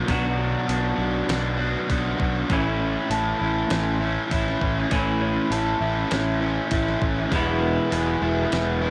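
Hazy and blissful, this short shoegaze and dream pop fragment, cut from a longer piece, drifts over Bm, A and Eadd9 with a light-reverb home-cassette sound. A lo-fi, compressed guitar through a small old amp picks arpeggios under subtle chorus and tape echo, while an up-front overdriven guitar drenched in lush chorus and a second overdriven guitar bathed in reverse reverb play picked riffs. A growly fuzz bass and a sampler-style 12-bit drum machine with thumpy kick, fat snare and hi-hat come in at 0.1 seconds.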